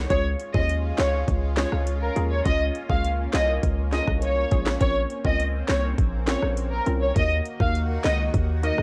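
A lush studio violin section carries an expressive, vibrato-rich melody with portamento, touched by analog delay and cassette tape, over a sunny, summery dancehall groove, where a punchy, heavy 808-style bass sits up front beneath a hollow, bouncy square pluck and a bright, chorused and phased unison pad, both pumping with sidechain, while an electronic island pop kit supplies a knocking kick, sharp snare, metallic hats, handclaps and rim clicks in this dry excerpt of a home cassette recording.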